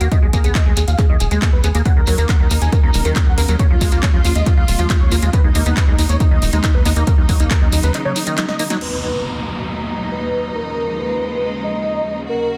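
Opening on a huge, detuned supersaw melody over a squelchy acid-bass arpeggio, punchy up-front kick, tight sequencer bass, metallic-hatted big-room drums and a grainy shekere, with the supersaw, acid bass, sequencer bass and drum kit pumping with sidechain in Eb minor at 138 BPM, this euphoric, emotional uplifting trance excerpt adds clear bowed strings at 1.9 s, then breaks with a drum fill before a velvety, chorused synth lead and an electronic downlifter enter at 8.8 s over the sustained strings.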